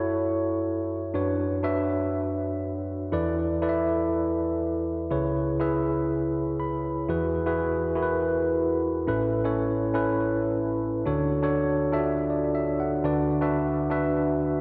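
A straight 4/4 pulse at 121 BPM drives this short pop cut from a longer piece, its mood moody and urgent. A solo tine electric piano carries everything from 0.0 to 14.6 s, sitting up front with a clean, warm tone heard through built-in speakers and spanning A1 to B5, with delay trailing its notes. The harmony opens on F#m7 and moves through Bmadd9/F#, E7sus4 and C#m7 before a fill from the piano at 6.3 s leads into the second section at 7.1 s. That later passage runs through Eadd9, Aadd9 and Dmaj7, settling on Bm/D. A lush hall reverb with a 2.7 s tail soaks the mix, giving the whole recording a dreamy, wet atmosphere.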